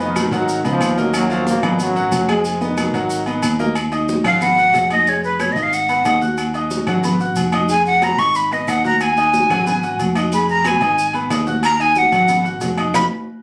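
Captured on a phone in a small studio room, this compressed salsa excerpt has a close, lively ambience and a driving, passionate mood. A tight, punchy trombone section with light vibrato opens on the melody and drops out at 3.6 seconds, while an intimate baby grand piano, its action noise audible and its notes sustaining long, carries the accompaniment throughout. Underneath, a round, dark fingered electric bass anchors the minor-key chords, and a percussion bed of ringing high-tuned congas and grainy maracas, both sounding distant, joins metal-shelled agogo bells and timbales and woody claves set in the background. At 4.3 seconds a breathy, bright jazz flute steps up front for a solo with vibrato and a crisp, chiffy attack, standing clearly above the band. The excerpt closes on a band accent at 12.9 seconds.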